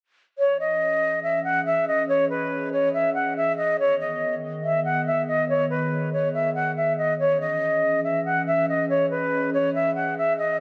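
A half-time 4/4 hip hop feel at 141 BPM in C# minor carries this melancholic yet hard-hitting excerpt, where an airy, straight-toned concert flute enters at 0.4 seconds with a filtered, delayed melody over a detuned, warbling lo-fi pad that joins at 0.7 seconds, the two moving through C#madd9 and G#m chords in a lush hall reverb.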